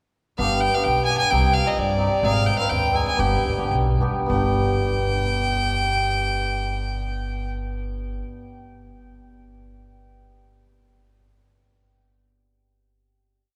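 In a straight 2/4 pulse between 98 and 131 BPM that slows from 2.2 to 4.3 seconds before a final chord, this short, bittersweet and soulful klezmer piece in G phrygian dominant, tuned to A4 = 436 Hz, sets a dark, earthy bowed violin up front playing an ornamented modal melody with light vibrato over a mellow, shimmering hammered cimbalom giving syncopated triad chords and a woody pizzicato upright bass on root and fifth, moving through G, Cm and Ab back to G in a church or concert hall's cathedral reverb.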